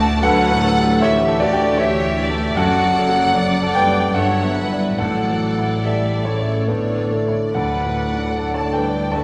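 A clear, intimate grand piano carries the melody from the opening moment, its audible action noise and long sustain sitting up front in this passionate, lyrical classical passage in a flexible, rubato triple metre. Around it, rich chamber violin sections with focused vibrato share the melody and a second line, joined by a very quiet, airy silver flute on that same upper line. Beneath them, a distant viola section provides accompaniment while a French horn section holds soft-attack sustained chords, and cellos and double basses supply a smooth, bowed bass in the background. At 5.0 seconds, very quiet timpani with hard mallets add articulate, close strokes, and from 5.8 seconds a dark solo bassoon briefly adds accompaniment. The harmony moves from A7/D through D/F# and Em7/G to Asus4 and A before settling on D, all framed by the wet reverb of a scoring stage.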